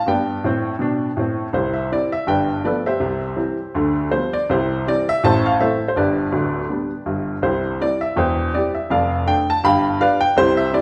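Stride piano jazz with an exuberant, swinging character, this short excerpt from a longer piece is carried entirely by a solo upright piano from start to finish at 10.8 seconds. The instrument sounds worn and woody, slightly detuned, with a short sustain, and it sits present and up front in the mix. Its range stretches from deep bass notes up into the high treble, giving the performance a full, lively spread. A brief opening phrase gives way at 1.5 seconds to a longer passage that moves through C major harmony, touching on G9, Am and C/E before settling on a G7 near the close. The performance was captured live in a single room, wrapped in a wet, large studio reverb that adds space around the piano's clear, bouncing swing.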